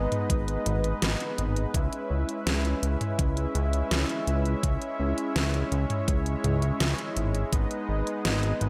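Light reverb gives this short cut from a longer synthwave piece a close, nocturnal sheen, with the synth parts sitting up front and pulsing under sidechain pumping. At 83 BPM in a straight 4/4, a soft supersaw holds sustained chords built from detuned sawtooth unison voices with an airy noise layer, moving from G#m to C#m7 at 1.7 seconds and returning to G#m at 7.5 seconds. Beneath it, a fat analog bass blends sawtooth, square and triangle waves with detuning, ring modulation and a filter sweep, giving a thick, warm low end with a fast attack. A pop drum kit with a deep snare, hi-hat and toms is overdriven and soaked in gated reverb, and an overdriven electronic kick with a knocking punch enters at 0.3 seconds. The overall feel is driving and nocturnal, a smooth late-night pulse carried by the pumping synths and gritty, layered drums.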